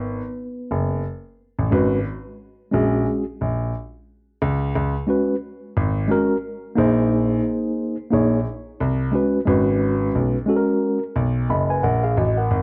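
A mellow, clean tine electric piano sits up front in this cool jazz-hop fragment at 89 BPM in G# minor, with a 16th-note swing. It carries chords from G#m7 through G#7sus2 to A#m9 at 6.8 seconds and G#m9. Beneath it, a smooth, vintage grand piano with short sustain plays the low bass line, all wrapped in light reverb and a dark, warm production.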